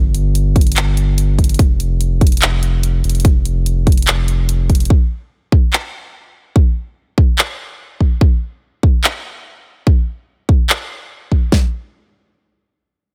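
Future bass at 145 BPM in 4/4 with a half-time feel, this dreamy, emotional passage is cut from a longer piece. A saturated sub bass sits up front from the opening, deep and thick with a sine core, fast attack and sustained tone, moving between F1 and G1 and pumping under sidechain compression until 4.9 seconds. An electronic pop drum kit carries the groove, with handclaps and hi-hat from 0.1 seconds joined by a punchy kick and fat snare, the loudest part of the mix. Both drum layers are layered, produced and forward in the sound, over a digital ambience. The opening section runs to 11.5 seconds before a brief second section takes over.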